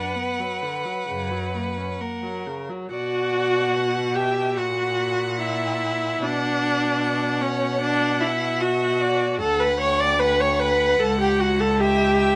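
In a moderate studio reverb, this elegiac, yearning slow romantic movement for string quartet in B minor unfolds with rubato at 63-77 BPM: the clear, intense viola sits up front with its bowed accompaniment, a smooth, even first violin sings the vibrato melody from the background, and a second violin adds its own bowed line, while a distant, rich cello joins on the bass at 1.1 s as the harmony passes from Bm and F# toward D and Em69/C#.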